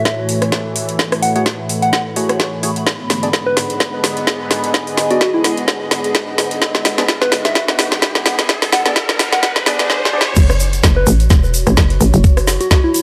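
Bouncy and gritty, this bass house passage is cut from a longer piece and spends most of its length building toward a drop at 10.4 seconds. A bright, resonant sawtooth pad holds sustained chords with chorus and sidechain pumping, while a warbly, lo-fi tape-like pad sits in the background with phaser and its own reverb, adding a nostalgic haze. Over them a round, gentle FM lead with a keys-like, vintage character carries the melody through chorus and delay, and a dark, hollow organ stab joins at 1.4 seconds with analog chorus, pumping and delay. An overdriven garage kit sits up front with a woody snare, metallic hats, rim clicks and crash, backed by a knocking, overdriven kick further back, and a filter sweep, drum fills, a riser and a noise sweep heighten the tension. At the drop a punchy, hollow FM bass with tube saturation enters up front alongside a grainy tube shaker, all set in a lush hall ambience.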